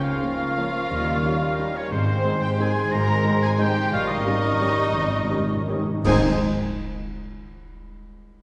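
A wet, hall-like reverb with a softened top end frames this festive, sweeping orchestral ballroom waltz excerpt in Ab major, moving in a rubato 3/4 at 155-194 BPM, where veiled, con sordino violins carry the melody over a second violin line, clear oboe, mellow clarinet, hollow silver flute, bassoon, ringing harp arpeggios, dark muted violas, cellos and double basses, and very quiet sustained trombone and French horn chords, with soft, round timpani joining at 1.9 seconds and playing a fill from 3.9 seconds before bright cymbals and bass drum enter at 6.0 seconds for an accent.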